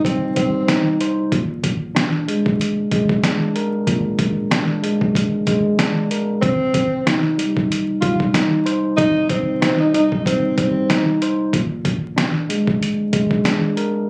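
A breathy tenor saxophone carries the melody in a mellow, jazz-style solo, its subtone voice shaped by vibrato, scooped notes and a smooth top, with a digital delay trailing behind it. It sounds only briefly at the very start, then returns from 6.4 to 11.0 seconds, sitting up front in this moody, reflective boom-bap hip-hop excerpt cut from a longer piece. Underneath, a tine electric piano plays accompaniment throughout, its worn, slightly out-of-tune tone colored by cassette tape as it moves between Cm and Bb7. The sampler-style trip hop drum kit is compressed, pitched down, gritty and overdriven, with a thumpy kick, a medium-tuned snare and hi-hat riding a swung sixteenth-note groove. The whole piece sounds as if captured on a phone in the room, with club reverb, light reverb and vinyl crackle adding a lived-in haze.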